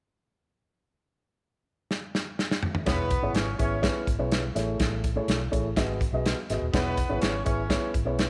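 Warm and uplifting, this short cut of 1960s-style soul opens with an airy, punchy drum kit fill at 1.9 seconds, then a round, foam-muted electric bass, a dark, woody upright piano up front and a distant, roomy horn section with light vibrato join at 2.9 seconds over E6, Amaj7 and G#m7 chords, all set in light reverb and studio ambience.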